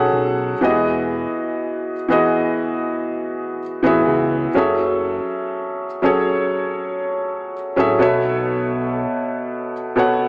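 Moody and longing, this contemporary R&B excerpt drifts at a slow 61 BPM in 4/4 with a lightly swung sixteenth feel in F# dorian, as an intimate, up-front felt-muted upright piano carries the accompaniment through F#m7, Emaj9 and B7sus4 while a fat, detuned analog bass with a moving notch holds the low end until 9.1 s, the recording set in a lush hall reverb with a small-speaker tone.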